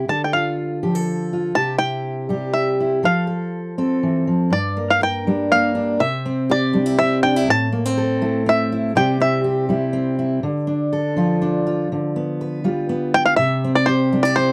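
A twangy, percussive bluegrass banjo played with fingerpicks carries the melody over a bright, full-bodied fingerpicked dreadnought guitar in this intimate, reflective acoustic folk piece in 3/4 at 122 BPM in G dorian, its dry, close 1970s-style sound keeping both instruments up front as the banjo drops out at 10.1 seconds and returns at 13.1 seconds over chords moving from Dm through Gm and Am to a closing C.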